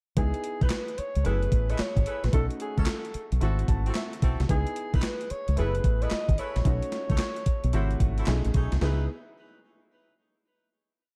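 A dark, warm production set in a small room opens this short new jack swing piece in C# minor, moving at 111 BPM with a hard 16th-note swing and a confident, slick mood. Up front, a gated 80s digital drum machine punches out a hard-swung beat with a thumpy kick, hi-hat and a snare layered with handclaps, its sampler-style hits overdriven and drenched in gated reverb. Beside it sits a deep, round dub-style fingered electric bass, foam-muted and dark, bouncing through a swung synth-funk line dotted with muted ghost notes and chromatic approach notes. A clear, natural grand piano holds rootless chords with short sustain over a cycle of C#m9, F#m11, B9 and G#7b9b13, and slips in a short fill at 3.4 seconds. A distant, roomy horn section adds short syncopated jazz stabs from 0.6 seconds, while a mellow, breathy alto saxophone in subtone spins a free, punchy solo melody with scooped notes that ends at 8.3 seconds, leaving the band to land on a final C#m9 chord at 8.8 seconds.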